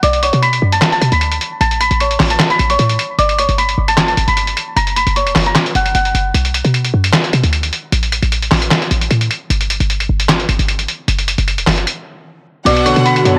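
Brooding and melancholic, this half-time trap cut from a longer hip hop piece opens on a delicate, bell-like celesta melody with soft felt hammers and a touch of delay, carried over a minor progression. Underneath, a short, punchy 808-style bass with a fast attack and a noise layer sits up front alongside a muffled, pitched-down sampler-style drum kit of hi-hat, handclaps, a medium-tuned snare and crash cymbal, its compression sounding warm as tape. The celesta drops out at 6.3 seconds for a break, leaving bass and drums to carry the track over an open, chordless stretch. At 12.7 seconds the celesta returns with a bright concert grand piano sounding deep in its bass register and a distant, lushly bowed violin section holding a single high note, before an ethereal, detuned pad and dark, roomy brass stabs crowd in during the final moments. The whole mix sits in a small, lightly reverberant room and is pushed into a blown-out, overdriven sound that roughens its edges.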